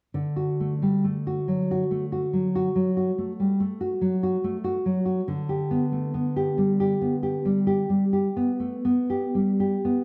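A dark, warm recording set in a reverberant recital hall places a woody, full-bodied nylon-string guitar up front, its old strings and thumb-plucked playing yielding a deep classical tone. This serene, tender fragment of classical music, cut from a longer piece, moves in a slow, rubato 12/8 at roughly 38-48 BPM in D major. The guitar accompaniment rests on a D chord before shifting to G over D at 5.3 seconds.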